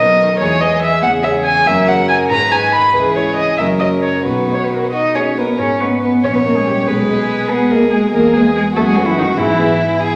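Set in 6/8 at 89-98 BPM with a rubato feel, this lively, graceful classical-period movement for piano quartet is cut from a longer piece and moves from B major to G# minor at 5.6 s. An up-front, dark solo violin carries the melody, played sul tasto with light vibrato and a soft attack. A second violin with an airy bow and a pure, floating, distant cello share the second lines, while a mellow concert grand with a deep bass supplies the accompaniment, all in the wet reverb of a recital hall.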